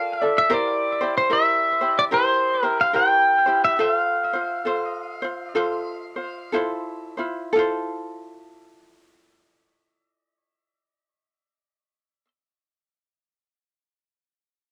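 A homespun cassette recording in a booth with moderate ambience carries this sunny, languid Hawaiian fragment, cut from a longer piece, with a gentle swing that slows down through the opening section. Up front, a clean, compressed electric pedal steel guitar sings a twangy, fingerpicked slide melody with volume swells and analog delay until 6.6 seconds, over chords moving from Bbmaj7 to C7 and Fmaj7. A light, fingerpicked acoustic ukulele, also up front but quieter, carries the accompaniment and continues alone until 12.3 seconds.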